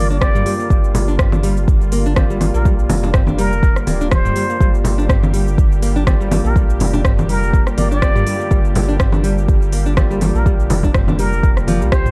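An earthy, hypnotic afro house groove at 123 BPM in 4/4, swung lightly on the sixteenths and sitting on a single G minor seventh chord throughout this short cut from a longer piece. A muted trumpet carries the melody in a jazz style, its plunger giving a breathy wah-wah tone with vibrato and a smooth top, echoed by digital delay. Beneath it, a fingerpicked nylon-string guitar plays dark arpeggios with audible finger squeak, while an overdriven tine electric piano adds barky, gritty stabs through a combo amp, both carrying delay and sidechain pumping. A round, deep analog bass and a detuned sawtooth pad with a warbling chorus sit under the harmony, the pad held in the background with slow-attack sustained chords, and both pump against the beat. A produced drum kit of smooth hats, cabasa, rim click and toms enters at 0.1 seconds, an up-front electronic kick arrives at 0.2 seconds, and low-tuned, damped congas played with soft hands join at 0.9 seconds, all in a dry mix.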